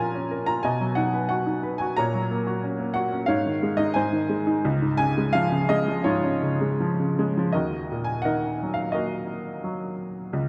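Worn, warbling cassette tape with a warbly pitch drift colours this short fragment of a longer piece, set in a wet concert hall reverb. A lyrical classical solo piano plays with relaxed, unhurried rubato at roughly 77-92 BPM in 4/4, its upright tone clear, woody, slightly detuned and close up front, ranging from Db2 to Bb5. Chords move from Bbm through Cb, Gb/Bb and a suspended Ab resolving to Db, before a new passage opens on Ebm at 7.5 seconds.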